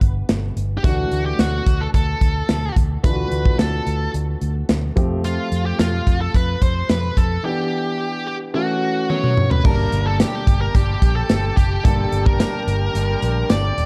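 This 1980s-style pop excerpt opens at 109 BPM in a straight 4/4, with a dark, mellow concert grand piano, a round, foam-muted fingered electric bass and an up-front studio drum kit with punchy kick, snare, hi-hat, toms, crash and tambourine, all set in light small-room ambience for a romantic, uplifting mood. From 0.8 seconds a high-gain, distorted lead guitar carries the melody over chords such as Dadd9 and Fadd9. After a drum fill, at 9.6 seconds the harmony turns to Gmadd9 as a very quiet, double-tracked crunchy guitar and an airy small flute group with vibrato join, the flutes holding sustained chords in the background.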